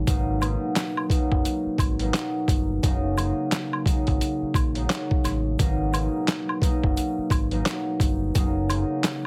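A thumb-plucked concert harp, ringing and up front with a filtered cassette-tape tint, opens this gritty, moody boom-bap hip-hop excerpt in G# minor, alongside a dark, round fingered electric bass, as the chords move between G#m9 and F#69. At 87 BPM with a swung 16th feel, a pitched-down, thumpy sampler-style drum kit with a medium-tuned snare, hi-hat and handclaps comes in at 0.1 seconds, joined by a saturated egg shaker, woodblock and group handclap sitting lower in the mix. The recording is dry and heavily compressed, with a radio-like sound.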